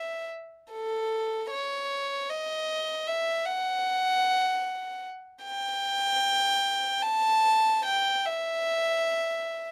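Close, detailed microphones and light reverb place a single violin up front in this brief classical fragment, a solo for unaccompanied violin lasting 9.7 seconds. The violin plays bowed, sul tasto, with a soft attack and an airy bow, its rich, pure and floating tone moving between A4 and A5. The mood is yearning and mournful, shaped freely and expressively.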